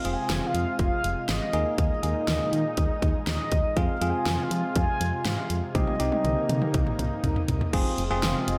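A straight, driving pulse in common time sets this nocturnal synth-pop fragment in motion, carried by a punchy, up-front pop drum kit whose fat snare, kick, hi-hat, crash and toms sound electronic and layered, re-recorded in a large room. A solid FM bass, round and dark with a fast attack and decaying notes, sits under a bell-like tine electric piano that plays bright, clean, direct accompaniment. A vintage sawtooth analog pad holds sustained chords, smooth and warbling with detuned chorus and a slow attack. On top, a mellow horn-like synth lead carries the melody with a soft attack, vibrato and a filter sweep, its chorus, shimmer reverb and slapback echo shared in part with the electric piano. The harmony moves from Fm through Ebsus4 and Cm7 back to Fm, with a drum fill from 5.8 to 7.7 seconds, all set in a wet recital-hall reverb that gives a big arena sound.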